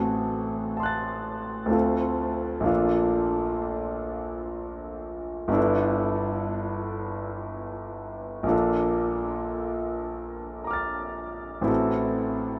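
Nocturnal and hazy, this impressionist classical fragment for solo piano drifts in an unhurried 3/4 with a flexible, rubato feel. A clear grand piano carries the whole 12.6 seconds by itself, ranging from G1 up to A6, and sits up front with an intimate, natural tone in which the action noise of the instrument is audible. Around it hangs a huge, wet ambient reverb with a long 7.6-second decay, placing the piano inside a vast, echoing space. The harmony moves from Am6 through Dm7 and Bbmaj7 to a lingering G69, returns to Bbmaj7, and settles back on Am6 at 11.7 seconds. Tuned slightly below standard pitch at A4 = 439 Hz, the passage is cut from a longer piece and feels like a single suspended thought.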